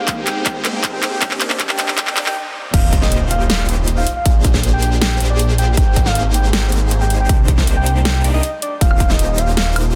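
Future bass in Eb major at 158 BPM with a half-time feel, this lush, playful passage from a longer piece opens with a build-up in which huge, phaser-swept supersaw chords, a soft, round octave-layered lead with chorus, delay and vibrato, very quiet glassy digital keys and an ethereal airy pad sit over a drum fill and an electronic riser. At 2.7 seconds the drop lands with an impact. A thick, saturated detuned saw bass joins the punchy electronic kick and a big-room kit with a huge snare, metallic hats, crash, handclaps and woodblock, while the bass, lead and supersaws pump against the kick. The dense, heavily limited master carries little reverb and keeps the kick, kit and bass up front.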